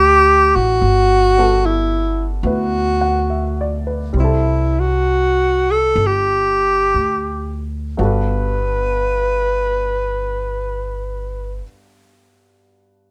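A breathy alto saxophone carries the melody up front in this tender, late-night jazz ballad, its subtone colored by light vibrato, scooped notes and a punchy edge. A baby grand piano accompanies with an intimate, natural sound, short sustain and audible action noise. Underneath, a woody upright bass is plucked on steel strings and sits up front in the mix. In G major with a lilting swing, the tempo ranges from 56 to 76 BPM and slows down until 8.0 seconds, while the harmony moves from Gmaj9 to C6 and back to Gmaj9. The saxophone and bass stop at 11.6 seconds, leaving the piano alone until 13.1 seconds, and the whole is heard through light reverb in a rough home demo mix.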